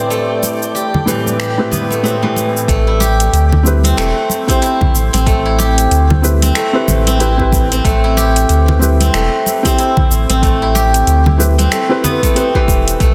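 A dense, heavily limited modern mix sits in a moderate, lush hall reverb that surrounds this meditative, earthy organic downtempo cut. In A minor at 93 BPM in 4/4, with a 59% swing on the 16ths, it opens on an Am7 chord. A silvery steel-string zither, played with fingerpicks and carrying delay, rings up front with arpeggios. A felt-muted upright piano, mellow and boxy with audible action noise, provides accompaniment through sidechain pumping and delay. For the first 2.7 seconds a cloudy, detuned granular pad and a very quiet, twinkling granular texture with an octave-up shimmer drift above, and the texture briefly returns at 13.0 seconds. The afro-pop drum kit adds finger snaps, metallic hi-hats and shaker with overdrive and a soft-clipped snare, while close, dry congas with hard hands join at 0.4 seconds. At 2.7 seconds a round sine sub bass and an overdriven, deep electronic kick drum enter, grounding the groove to the end of the excerpt.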